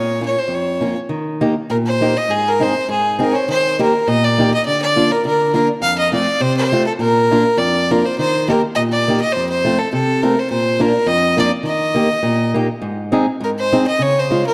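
A straight 2/4 pulse at 102 BPM drives this jolly, festive alpine dance-band fragment, which opens in Ab major and moves to Eb major at 3.5 s. Up front, a single bowed fiddle carries the melody with a biting, airy tone and light vibrato, while a fingerpicked steel-string parlour guitar accompanies with a boxy sound, fresh strings and the odd finger squeak. Both sit in a moderate concert-hall reverb within a dark production, and the tune returns to its opening idea at 12.8 s before the clip ends.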